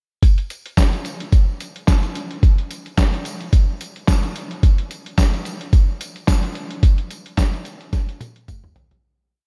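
A four-on-the-floor boogie beat with a light swing drives this funky, danceable early-eighties boogie funk breakdown, where an up-front, compressed, pitched-down lo-fi sampler-style drum kit with a thumpy kick and a medium-tuned snare layered with handclap sits over a jingly, bright tambourine on the backbeat in the background, all in light digital ambience, as the music fades out from 6.8 seconds and a closing drum fill arrives at 7.9 seconds.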